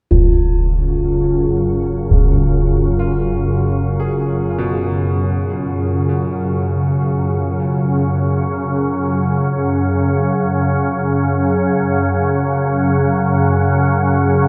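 Unfolding in free time, this dark ambient drone sets an ominous, dark mood in a vast, echoing cathedral-like space with a long 5.2-second reverb tail. A concert bass drum opens the passage at 0.1 seconds, close, dry and up front, its low end softened by a low-pass filter, and it falls away by 2.3 seconds. At that same moment a bronze singing bowl begins ringing quietly in the background, its metallic, meditative tone struck with a suede striker and marked by slow beating as it sustains throughout. From 0.5 seconds an organ-like drone settles in up front, a calm, evolving sine-based sound built from detuned unison voices with ensemble chorus, slow attack and long release, holding between F#2 and C#3. A bright grand piano with a brilliant yet worn character enters with arpeggios at 3.0 seconds, faint and delayed, spanning B2 to G#4 over an F#5 chord. The passage is cut from a longer piece.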